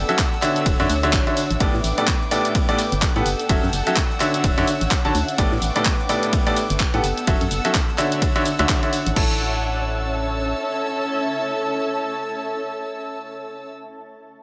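A clear, worn grand piano riff with tape echo leads this uplifting, joyful piano house excerpt in A mixolydian at 127 BPM with a swung 16th feel, pumping over a hollow, organ-like FM bass, a dark sul tasto chamber string section, a cloudy granular pad, a dry, punchy electronic kick and a tape-warm house kit of hi-hat, ride, crash, cabasa and handclaps through a drop that cycles Dmaj9, A9sus4 and F#m7, until the drums stop at 9.3 s and the bass at 10.5 s, leaving piano, strings and pad to settle on A.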